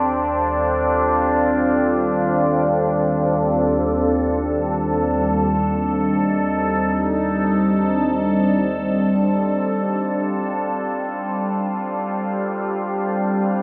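An evolving wavetable pad carries this serene ambient excerpt on its own from 0.0 to 13.6 seconds, reaching from Eb2 up to A4. Its tone is dark, detuned and vintage, with a morphing, warbling quality and a sine-like core. Each note arrives through a slow attack, sustains at length and fades on a long release, while a phaser and the pad's own built-in reverb color it from close up front. The harmony rests on Ebadd9 before moving to F at 9.4 seconds, giving the passage a warm, suspended glow. Everything sits in a wet, huge ambient space with a reverb tail of about 8.3 seconds.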